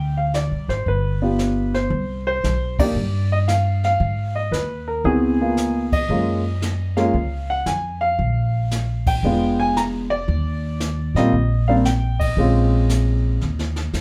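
Swung eighths in 4/4 drive this sophisticated jazz piano trio excerpt: an up-front baby grand piano with a warm, natural tone carries the melody over a woody, growly pizzicato upright bass that also sits close, while a brushed kit with dark cymbals and a boomy kick keeps time, all captured in a wet studio ambience heard from further back in the room, the trio hitting recurring band accents before a drum fill at 13.4 s.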